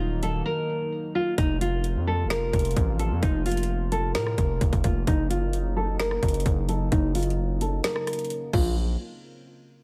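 A half-time trap groove with a hard-clipped kick, woody snare and metallic hats drives this dark, hard-hitting hip hop fragment, where a fingerpicked, full-bodied nylon-string guitar melody with delay sits up front beside a saturated, aggressive 808-style bass over a smooth, detuned analog pad, while a filter sweep runs through the section, broken by a silent gap from 0.5 to 1.4 seconds, before the kick drops out at 7.8 seconds.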